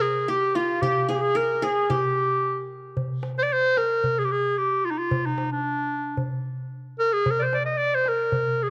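A present, bright clarinet opens this melancholic, longing makam ensemble excerpt, carrying a classical-style solo melody up front while a warm, fingerpicked qanun with triple strings adds a second line until 3.2 seconds. From 0.8 seconds a clay-shell darbuka with a natural skin enters under soft hands, sitting low in the mix in a live-room sound. A moderate echo-chamber reverb gives a lingering sense of space as the music moves into a new section at 3.0 seconds.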